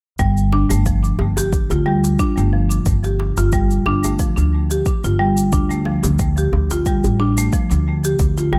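A marimba played with medium mallets sits up front, spinning hypnotic arpeggios between F3 and G4 with a boxy small-room tone and a tape echo that trails each note through an echo-heavy mix. This is a short excerpt of organic downtempo at 90 BPM in 4/4, with a gentle 16th-note swing and a mystical, trance-like mood. A woody, thumpy upright bass, plucked pizzicato on steel strings, holds the low end between G1 and D2 and is the loudest part, also placed up front. A soft electronic kick and a cabasa, both tape-warm and re-recorded in a small room, start at 0.2 s, and a tight, cracking djembe, close and dry, joins at 0.5 s. The harmony rests on a G5 chord before shifting to D minor at 5.5 s, all within light reverb and studio ambience.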